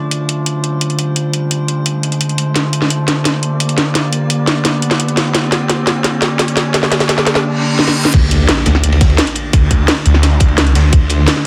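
Dark technical drum and bass at 172 BPM in D minor, cut from a longer piece, where an eerie, metallic FM drone with chorus and sidechain pumping holds sustained chords over an up-front electronic kit with a cracking snare, hi-hat and crash, while a background riser and reverse cymbal drive a build-up full of drum fills, until the drop at 8.1 s brings a tight electronic kick, a snarling, detuned sawtooth bass on D2 with distortion and overdrive, a gritty, rolled-off breakbeat kit in the background and an impact, giving a mechanical, aggressive feel in a dense, heavily limited mix.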